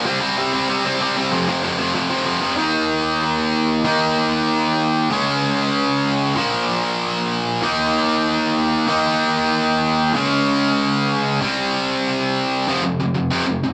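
Aggressive and angry, this punk fragment at 190 BPM in a straight 4/4 features a solo distorted electric guitar, bright, overdriven, picked and double-tracked, sitting up front as it drives power chords from C5 and F5 through Eb5, Db5 and Bb5, dropping into a half-time feel from 2.6 to 12.7 seconds before landing on F5, all captured as a live band in one room with a moderate large-studio reverb.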